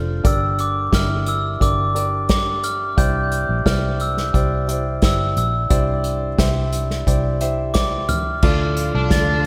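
A ringing, bell-like glockenspiel melody and an intimate concert grand piano with audible action noise, both touched by slapback echo, open this hopeful, anthemic piano-driven pop excerpt at 88 BPM, alongside a dark, round, foam-muted electric bass, with an up-front acoustic drum kit played with bundle sticks joining at 0.2 s. The harmony moves from Gm to Cadd9 under a lush hall reverb that gives a big arena sound. At 8.4 s the music shifts to Dm as a bright, double-tracked overdriven guitar riff enters over a very quiet, veiled con sordino string section holding sustained chords.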